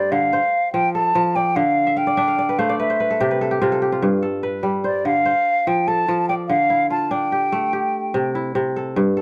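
A steady 12/8 lilt at 97 BPM in dotted quarters, played straight, carries this hypnotic West African traditional passage in F lydian, cut from a longer piece. A fingerpicked kora spins crisp, ringing arpeggios across its span, adding a fill from 1.9 to 4.0 seconds. Up front beside it, a hollow silver concert flute sings a pure, tongued melody with gentle vibrato until 8.3 seconds, all softened by light reverb over a warm, mellow drift of F, Dm, G and C chords.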